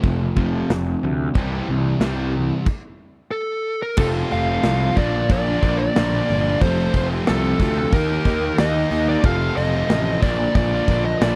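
A straight 4/4 groove at 91 BPM drives this swaggering classic rock passage in F mixolydian, cut from a longer piece, with a big acoustic drum kit up front, its punchy kick, medium-tuned snare, hi-hat and bright crash ringing in a big room. From the first beat a growly, fuzz-laden picked bass sits forward in the mix, joined by a biting overdriven guitar with spring reverb and, from 0.1 seconds, a cranked stack guitar, both riffing in the background over F and C. The band halts for a stop between 2.7 and 4.0 seconds, and a dark, compressed fuzz lead guitar enters at 3.3 seconds to carry the melody up front. At 4.0 seconds the second section opens on Fadd9, Bb and Eb, thickened by a very quiet double-tracked overdriven guitar riff, a woody, mellow upright piano accompaniment and a swirling, phased vintage string machine holding barely audible sustained chords. The whole take has the dry, close feel of a 1970s studio, set in a small room.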